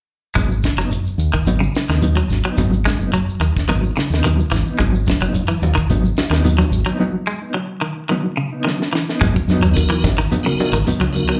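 A round, dark fingered electric bass sits up front in this defiant, hypnotic afrobeat excerpt at 108 BPM in G# minor, with a tight funk drum kit (high-tuned snare, dry and airy), a bright, scooped clean electric guitar playing arpeggios through slapback echo, and a mellow electric guitar adding dark stabs with tremolo over a G#m7 chord. A grainy shekere runs throughout, ringing congas join softly in the background at 5.1 seconds, and a break arrives at 7.0 seconds, closing with a drum fill. A piping tonewheel organ with key click, slow rotary speaker, light overdrive and chorus vibrato enters at 9.7 seconds, all heard as a live gig through the venue's PA with club reverb and a muffled top end.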